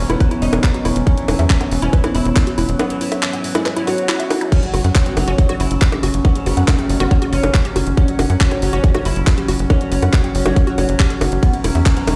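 A straight 4/4 pulse at 139 BPM drives this alien, psychedelic trance excerpt: an up-front, tight electronic kick and a punchy, sawtooth sequencer bass sit under a garage drum kit of bongos, handclaps, crash, ride and warm hats, with a brief break at 2.8 s capped by an electronic swell at 3.8 s. A bright, fretless, plectrum-plucked oud carries the melody through phaser, tape echo and sidechain pumping, beside a woody, wave-folded pluck riff with chorus and echo. Beneath them, a resonant, ring-modulated drone with moving overtones holds sustained E5 and F#5 chords under a deep, moody, detuned pad texture in a stone-room reverb, while a very quiet, saturated formant-sweep wobble bass surfaces at 5.1 s.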